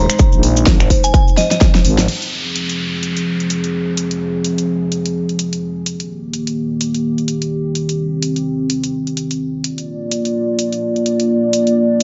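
A swung 4/4 groove at 127 BPM drives this gritty, aggressive bass house cut in F dorian, where a punchy, overdriven electronic kick, a growling FM bass and a grainy cabasa in the background drop out by 2.1 seconds during a drum fill. A glassy synth bell flickers with chorus, tremolo and digital delay in the opening moments, while a big-room dance kit with a huge snare, snaps, hi-hat and crash carries on beside a dark, detuned analog pad that pumps under lush chorus through Ab, Fm, Eb and Bb chords. An electronic downlifter sinks in from 2.1 to 5.9 seconds, all under a moderate plate reverb.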